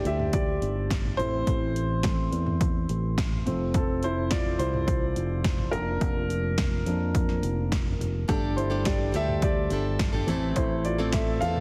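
Heavily compressed with a radio-ready sheen and light digital reverb, this earnest, dramatic piano-driven pop excerpt in straight 4/4 puts a dark, woody upright piano up front, carrying a solo over chords that move from Gsus2 through Am, F and Bb/F. A growly fingered electric bass and a punchy, tape-tinged analog drum machine, with its kick, snare, hi-hat and toms sitting forward in a small room, drive beneath it. At 8.3 seconds a bright, full-bodied plugged-in steel-string acoustic guitar enters with a picked riff, finger squeaks audible.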